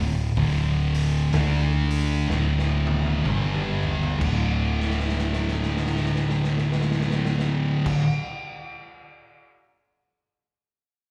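A slow, swung 4/4 pulse at 62 BPM drives this hypnotic, brooding stoner and doom metal excerpt, as a stack of three thick fuzz guitars grinds out a riff over D5, shifting to G5 at 3.2 seconds and back to D5 at 4.2 seconds. The loudest guitar sits up front, dark and distorted, while the other two, one of them double-tracked, trail far beneath it, and a woody fretless bass adds a growly, round, hollow-bodied overdriven low end. A raw garage drum kit, gritty and saturated with a punchy kick and a rolled-off top, enters at 0.4 seconds and packs in fills before ringing on to 9.5 seconds, all heard through the light club reverb of a live gig.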